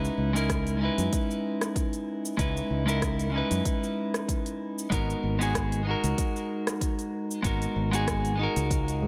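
A gently swung 95 BPM groove in 4/4 sets a relaxed, wistful sunset chillout mood in C# dorian, with a deep house kit of smooth hi-hats, rim clicks and shaker re-recorded in a small room, joined at 0.5 s by a deep, overdriven electronic kick. A punchy, bright fretless bass and an up-front, scooped clean electric guitar with digital delay carry the harmony from C#m9 to G#m9 at 4.9 s. Light reverb and digital ambience frame this short cut from a longer piece.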